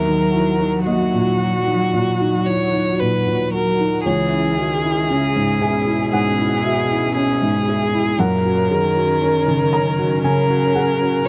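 Neoclassical piano and strings in C# dorian, fragile and reflective, moving at a rubato 58 BPM through D#m, C#m and F# in this short excerpt cut from a longer piece. A single bowed violin carries the melody with smooth vibrato, while a rich, focused cello sings a second line beneath it, and a felt-muted upright piano sits up front with soft, intimate accompaniment. A hollow, flute-like pad with ensemble chorus holds slow-blooming chords in the background, all captured in a dry, close 1970s-style studio sound.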